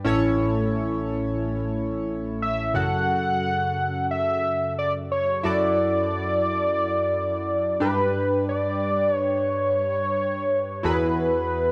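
A straight 4/4 pulse at 89 BPM drives this moody, urgent pop fragment in F# minor, cut from a longer piece and tuned slightly sharp to A4 = 441 Hz. Chorused retro synth keys carry the accompaniment from the start, their glossy, airy tone built from pulse and sawtooth waves with pulse-width modulation, a noise layer and a filter sweep, striking with a fast attack and decaying across a range from A1 to D5. At 2.4 seconds a thick, bold unison lead enters with the melody between B4 and F#5, its detuned sawtooth and triangle voices wave-folded and ring-modulated into a sustained, mellow line with vibrato. Both parts sit up front in a moderate plate reverb with a 2.8-second tail. The harmony moves from A through F#m, Dadd9/F# and G before settling on Eadd9 near 10.8 seconds, where the fragment ends at 11.7 seconds.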